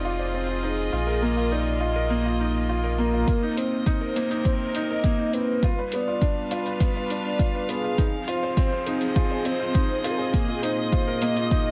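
This intimate, cinematic piano-and-strings electronica excerpt opens with a soft, felt-muted upright piano riff up front, its audible action noise and mellow tone trailed by digital delay. Beneath it, a muted string quartet holds veiled, con sordino chords with vibrato, one player per line. A round sine sub bass pumps in sidechain alongside the strings, while a velvety, warbling vintage synth lead sings a smooth melody between Ab4 and Eb5 through chorus. The sub bass drops out at 3.2 seconds, and at 3.3 seconds a deep, overdriven electronic kick and metallic, low-pass-filtered hi-hats, both re-recorded in a large room, arrive to drive a build-up that lasts to the end. In C minor at 102 BPM, the harmony moves from Fm7 and Bb7sus4 to Cm7 and G7 under a light reverb.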